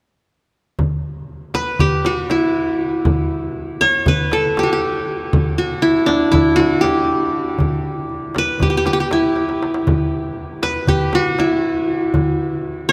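This recording rings out in a vast, echoing space, with a long cathedral-like reverb hanging around the sound. It is a melancholic, hypnotic fragment of a Turkish makam ensemble piece in 9/8, cut from a longer performance. The percussion begins at 0.8 seconds: a crisp, small, high-pitched metal-shell darbuka played with soft hands sits in the background, alongside a deep, large frame drum that sounds close and dry. At 1.5 seconds the qanun enters up front, its bright-edged triple strings plucked with fingerpicks as it carries the melody in a compact middle register. A brief drum fill arrives at 9.4 seconds, and the qanun carries on a moment after the percussion stops, closing the fragment alone.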